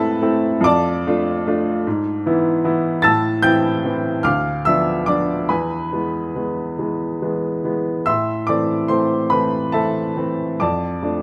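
Close, detailed microphones and a light reverb frame a clear, woody upright piano that sits up front with a natural tone, playing alone across this brief 11.2-second fragment of a longer romantic character piece. In A minor and 6/8 at roughly 44-51 BPM, counted in dotted quarters, the rubato playing feels bittersweet and brooding, spanning D2 to A6. The harmony moves from A minor through D minor and E7 toward a diminished chord and an E chord before returning to A minor at 8.1 seconds.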